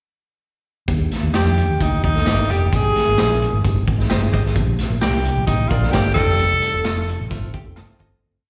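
A raw, gritty garage drum kit drives a straight 4/4 backbeat soul groove at 131 BPM, with a boomy kick up front, a jingly tambourine on every beat and a dark, round, foam-muted fingered bass playing a melodic, syncopated line through an uplifting, danceable 1960s-style soul piece that moves from Ebmaj7 through Abmaj7 and Bb6 to F7. A breathy, punchy tenor saxophone leads with song-like motifs and light vibrato from 1.4 seconds, while a worn, slightly out-of-tune tine electric piano adds lightly overdriven close-voiced chords and a bright, twangy direct-recorded guitar chops on the backbeat. A dark hollow-body jazz guitar slips in fills in sixths from 5.7 seconds as the short verse fades out in a live venue sound with recital hall reverb and slapback echo on the keys, guitars and sax.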